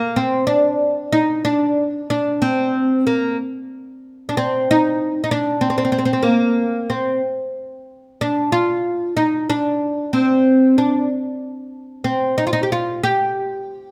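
Closely miked and detailed in a moderate recital-hall reverb, this melancholic, longing Arabic fragment, cut from a longer piece, features a solo acoustic oud, woody and plectrum-plucked on its double strings, up front across its Bb3 to G4 range at 62 BPM in a straight 6/8 for 13.9 seconds.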